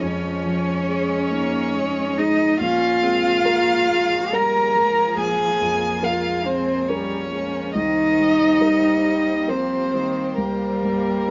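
A melancholic, longing neoclassical piece for piano and strings opens with the full ensemble sounding at once, moving in a flexible, rubato triple metre. Up front, a single rich violin carries the melody with light vibrato and an airy bow played sul tasto, while one dark, smooth-topped cello sings a close second line beneath it. A felt-muted upright piano adds mellow, thickly padded accompaniment reaching down into the deep bass, and a warm viola sits in the background with a gentle attack. A very quiet chamber string section holds sustained chords underneath, as the harmony moves from Dbadd9/F to Bbm7 at 2.6 s and Cm7 at 7.8 s. The players share one room with moderate studio ambience and a rounded, softened top end, in a passage cut from a longer piece.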